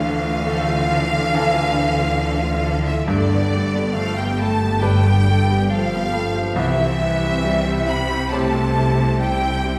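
Sorrowful and bittersweet, this rubato cinematic film-score passage is cut from a longer piece and moves through Dmadd9, Gadd9 and C chords. A lush violin section carries the expressive melody with soft-attack vibrato, while a focused, close second violin line shares its register. Around them sit background violas with portamento, mellow sustained French horns, a brilliant grand piano, and a very quiet, ringing harp playing arpeggios. Distant cellos and smooth, even double basses anchor the bass, all heard from further back in a wet scoring-stage reverb.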